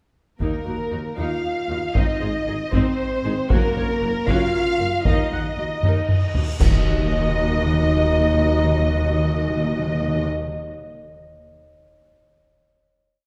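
Relentless and heroic, this short epic orchestral film cue in 6/8 sets up-front taiko drums pounding a big ostinato beneath lush bowed strings: two violin sections double the tune at the octave, violas and cellos drive rhythmic ostinatos, and very quiet double basses and a mellow tuba double the bass line under sustained French horn chords. Soft-mallet timpani strike single bass notes, dark cymbal swells, clash cymbals and concert bass drum build the theme, and a drum fill leads into a band accent and a huge, low impact at 6.6 s as the music settles onto a final chord. The orchestra rings in a reverberant concert hall.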